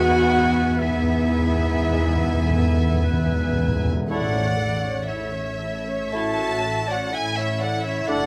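Soft-malleted timpani play a round fill through the first 4.1 seconds of this serene, tender excerpt from a slow romantic orchestral movement in A major, drifting with rubato at 53-64 BPM, as an intimate violin section sings the melody over dark cellos and double basses, with a second violin line, an airy flute, a clear distant oboe, clarinet and bassoon in the background, violas playing sul tasto, mellow horns holding chords throughout, and bright trombones sustaining until 3.7 seconds, all set in a moderate scoring-stage reverb.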